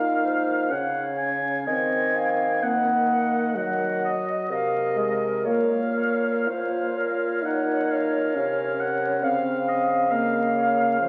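Heard through the crackle of a very old 78 rpm record and a wet recital hall reverb, this melancholic, solemn fragment of a slow romantic movement for wind quintet moves with a rubato feel in 4/4. A hollow, mellow silver concert flute with vibrato carries the melody while a clear oboe sings a second line, and a close-miked clarinet and a warm, up-front French horn fill out the accompaniment. A dark bassoon anchors the bass as the harmony settles from Bbm to Ebm, back to Bbm at 5.4 seconds and onto Bbm/Db at 9.2 seconds.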